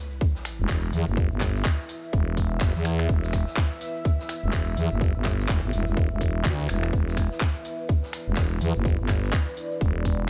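Swung sixteenths at 125 BPM drive this bouncy, aggressive bass house passage in E minor, where a tight, up-front electronic kick anchors a garage kit of bright hi-hats, finger snaps and handclaps and a very quiet big-room rock kit of hi-hat and snare, while a thick, growling, sidechain-pumped FM bass enters at 0.6 seconds, a background sub drop marks the opening impact, and a deep, moody, detuned sawtooth pad with chorus and its own reverb pumps along from 0.5 seconds in a mostly dry mix.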